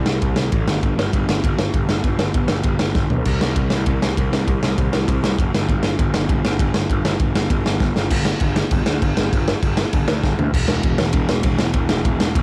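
A fuzzed, overdriven electric bass opens this short punk rock cut, and the drum kit comes in at 0.1 s, pushing a rebellious, energetic charge at 198 BPM in a straight 4/4. The picked bass sits low and up front, its growly, bright tone sounding direct and amped. The raw garage kit pairs a punchy kick and medium-tuned snare with crash, ride and toms, its acoustic small-room sound made gritty and saturated by cassette tape, with a rolled-off top. Short drum fills land at 3.0 s, 7.8 s and 10.2 s, the latter two leading into new sections as the piece moves through three parts. The home cassette recording is dry, giving the whole fragment a rough, do-it-yourself edge.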